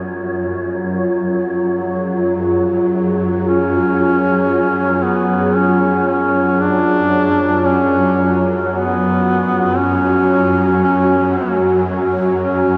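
This dark ambient drone moves at a slow 57 BPM in 4/4 and holds a C# chord throughout, creating a dark, cavernous mood in this passage from a longer piece. Underneath, a swarming, detuned drone shifts and evolves up front with a granular, tense grain and slow-blooming sustain. Above it, a moody analog pad sustains full-bodied chords with a sub-octave weight and a chorused sheen. A very quiet, breathy noise layer hovers high like distant wind. At 3.5 s a warm duduk enters as the solo voice, singing a folk-style melody up front with vibrato, scooped notes and trailing delay. A huge, wet reverb with an 8.3 s decay wraps the whole sound in a vast, shadowy space.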